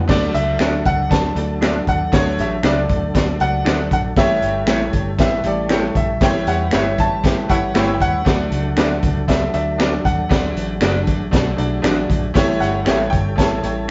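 Passionate and driving, this uptempo 1960s-style soul excerpt moves at 117 BPM over a D to A7 progression. A clear, intimate grand piano carries the melody over a woody, slightly detuned upright piano, a round, foam-muted fingered bass and a crunchy, saturated breakbeat kit with a punchy kick and high-tuned snare sitting up front. In the background sit sustained tonewheel organ chords with key click and chorus vibrato, along with lo-fi guitar stabs through a small old amp from 0.6 seconds. Very quiet finger snaps also enter at 0.6 seconds, and a light-vibrato horn section adds a brief second line at 7.2 seconds during a band accent, all in one live room with moderate reverb and a rolled-off top.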